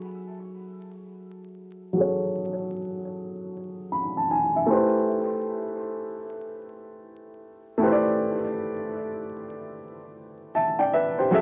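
Hip hop excerpt, reflective and hazy, with a swung feel carried by a lone dark, woody upright piano up front in a small room, its boxy tone dulled by cassette tape, a low-pass filter sweep and tape echo amid vinyl crackle as it moves from F#m9 to Am9, adding a fill from 3.5 to 5.1 seconds.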